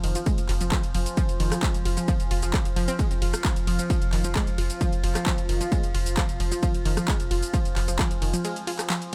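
An overdriven, heavy electronic kick drives this dark peak-time techno excerpt from 0.3 to 8.1 seconds over a saturated, thick sub bass that pumps until 8.3 seconds, while a detuned, sawtooth analog pluck riff with chorus and digital delay, a resonant drone of moving overtones, a moody wave-folded ambient pad in the background and a layered kit of handclaps, hi-hat, ride, rim click and shaker carry on through the brief break at the end of this dry, close-sounding mix.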